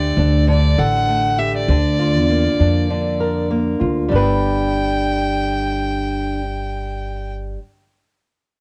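Sunny and easy-going, this short pop excerpt in G major moves at 99 BPM with a 16th-note swing, as a clear, earthy bowed fiddle with light vibrato carries the melody over fingerpicked flamenco guitar and a woody, thumpy pizzicato upright bass, all up front in studio reverb with a cassette-tape tint on the fiddle and guitar, the chords shifting from Dsus4 to Bb/D before settling on G at 4.1 seconds.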